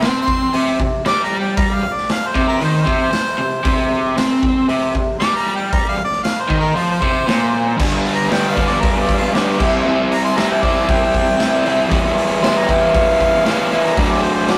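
A straight 4/4 pulse at 116 BPM drives this swaggering, raw garage rock excerpt, with a gritty, up-front acoustic drum kit of punchy kick, medium-tuned snare, hi-hat and crash pumping in a bright stone room, while a double-tracked, overdriven electric guitar picks a riff around a C5 chord. An overdriven yet clear harmonica takes a solo from 0.0 to 7.8 s, full of vibrato and scooped notes, and the music settles into G major at 7.8 s, moving through G, C, Em and D/F#. A rough rehearsal-room sound with tube saturation and moderate stone reverb gives the whole take a live, unpolished edge.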